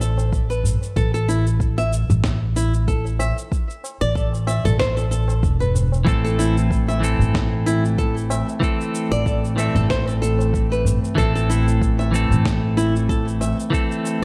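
Organic downtempo in A minor at 94 BPM, meditative and warm, with a lightly swung 16th feel resting on a single Am chord throughout this short cut from a longer piece. A bright, fingerpicked flamenco guitar plays arpeggios through tape echo over a woody, pizzicato upright bass that sits up front with sidechain pumping, while an overdriven, deep electronic kick, a gritty sampler-style shaker and fat snare, and a ringing, low-tuned tabla in the background fill out the groove. At 6.0 seconds a twangy, clean electric guitar joins up front with compressed picked accompaniment, pumping and echoing in a small, softly reverberant room with a dark production.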